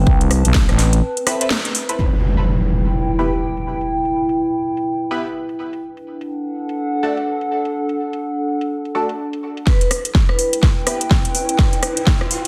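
A growling, thick FM bass opens this swaggering, bouncy bass house excerpt in E minor at 125 BPM, pumping against the sidechain for its first second before dropping out. Alongside it a warbling, nostalgic lo-fi pad of square and triangle tones sustains throughout with chorus, built-in reverb and the same pumping, while a garage kit of cracking snare, rim click and low-passed metallic hats swings its 16ths at 60% from 0.2 seconds onward. A band-passed, nasal sawtooth chord stab with ring modulation, phaser and digital delay flickers through the middle, as the harmony moves from Amadd9 to Em and D after a short break and an electronic impact at 2.0 seconds. At 9.7 seconds a ringing vibraphone with medium hard mallets and motor vibrato returns briefly, the punchy electronic kick comes back, and a drum fill, filter sweep and riser build tension to the close. The sound is dense and heavily limited, with light digital ambience and an up-front, tape-tinged drum punch.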